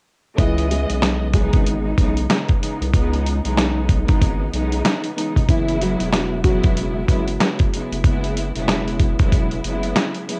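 A swung 94 BPM boom-bap groove in 4/4 drives this gritty, reflective hip-hop piece in C# minor, with a compressed, up-front sampler-style kit of thumpy kick, medium-tuned snare and hi-hat alongside a deep, thick, saturated sine sub bass, all moving from C#m7 to F#7sus4 at 5.5 seconds. A lush, bowed string ensemble with expressive vibrato and a smooth top holds the harmony, while a thumb-plucked classical nylon-string guitar carries the melody through cassette tape and analog delay until 8.0 seconds. The whole take sits in a small room with the character of a home cassette recording, cut from a longer piece.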